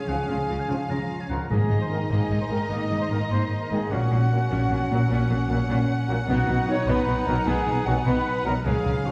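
Heard from further back in a reverberant scoring stage, this soaring, adventurous heroic film-score cue moves at 101 BPM in 12/8 over Db, Absus2, Gb/Bb and B chords. A lush, focused violin section carries the melody with vibrato, while a clear, close-miked oboe, a distant silver flute, a quiet roomy clarinet and a second, very quiet violin section add supporting lines, and a ringing fingerpicked harp plays arpeggios. A mellow trumpet punches out stabs over sustained chords from a vintage-toned trombone section and a soft French horn section, violas accompany, rich cellos and an expressive double bass section hold the bass, and the timpani strikes briefly from 1.5 to 2.1 seconds before the excerpt ends at 9.1 seconds.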